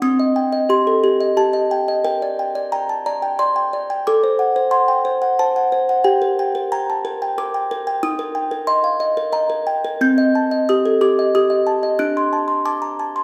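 A lone music box carries this classical lullaby, its delicate, tinkling plucked tones sounding from a large box and sitting up front in the mix. The mood is eerie and wistful, set in G minor in a gently rubato 3/4 at about 90 BPM. Across a range from C4 to G6, the harmony moves from Cm through Gm/Bb and D7/A to Gm, then on to Eb and Am7b5/C before settling on D7 at 12.0 seconds. A moderate recital hall reverb gives the airy notes a lingering halo. The passage runs 13.2 seconds and is taken from a longer piece.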